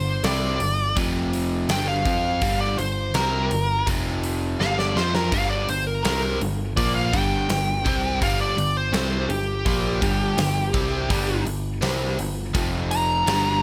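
A distorted, picked lead guitar solo runs through this brooding, smoky blues rock and southern rock excerpt, its bluesy melody sitting up front over a biting, double-tracked rhythm guitar whose warm overdriven riff rocks between G5, F5 and G minor chords. Underneath, a growly, bright picked electric bass plays amped and direct with real punch. A huge arena drum kit with a fat snare, a hard-hitting kick, hi-hat and a hall sound comes in at 0.2 seconds and drops in a fill from 4.6 to 5.3 seconds, all inside a small room ambience.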